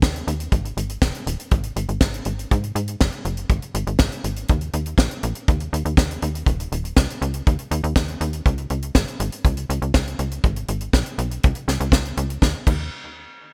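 From the first beat, an up-front acoustic kick drum and a tight funk kit with a high-tuned snare, hi-hat, crash cymbal and gated reverb drive this melodramatic, nostalgic italo disco excerpt at 121 BPM in a straight 4/4, alongside a punchy, nasal sequencer bass of sawtooth and square-wave tones with a plucked filter and digital delay, all in a dry, bright 1980s-style digital sound, until a new section arrives at 12.4 seconds.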